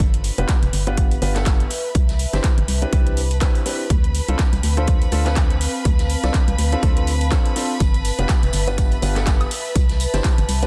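Energetic and soulful, this excerpt of piano house rides a swung 4/4 groove over a G7, Cmaj9 and Dm7 progression. A punchy, overdriven electronic kick sits up front, layered with an overdriven house kit of handclaps, hi-hat and woodblock, while a very quiet vintage kit adds a natural, rolled-off snare and hi-hat underneath. A hollow, organ-like FM bass with a fast, decaying attack anchors the low end, pumping against the kick. An intimate grand piano carries the riff from 0.4 seconds, its action noise audible and its notes trailed by tape echo, while a rich chamber violin section holds bowed, vibrato-laden chords above. A warbling, nostalgic tape-like pad drifts in at 0.6 seconds, dark and chorused in the background, and a close, dry tambourine joins at 7.8 seconds, all within a small room and a dense, heavily limited master.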